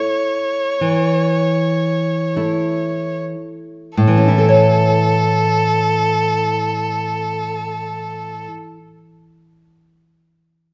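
A clear, smooth violin with vibrato and a woody, fingerpicked nylon-string guitar begin together, both up front. This is a warm, lyrical romantic duo in A major at a slow 39 BPM, played with rubato and easing back through the first 4 seconds. The bowed violin sings an even, close melody against the old-stringed guitar's classical accompaniment in a moderate recital-hall reverb, until the violin stops at 8.5 seconds and the guitar at 9.0, in this passage cut from a longer piece.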